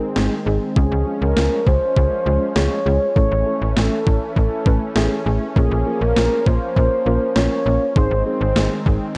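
Upbeat and bright, this short synth-pop fragment, cut from a longer piece, moves in a straight 4/4 over chords that shift from Ab through Db, A and Bbm before returning to Ab. A mellow, horn-like synth lead carries the melody with a round, vintage tone, soft attack and vibrato, while muted, felt-like synth keys add a dark, intimate accompaniment beneath it. A lush, thick unison pad sustains the chords with a nasal, detuned edge, and chorus colours the lead, keys and pad. From 0.2 s, a snappy FM bass with a metallic attack and an overdriven, gated 80s drum machine sit up front, the drums pairing a thumpy kick with a gated-reverb snare. The whole track sits in light reverb and sounds worn, like old cassette tape, with warbly pitch drift and a dulled top end.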